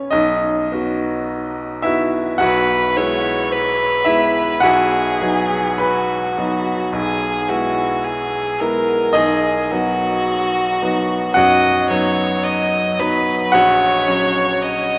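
Bathed in the long, echoing reverb of a vast cathedral, this lyrical, warm romantic classical duo in B major unfolds at a slow, rubato 54 BPM, with a bright, brilliant grand piano sustaining a polished accompaniment from the opening, joined at 2.4 seconds by a rich, smooth violin with vibrato that carries the melody through to the cut at 15.0 seconds of this passage taken from a longer piece.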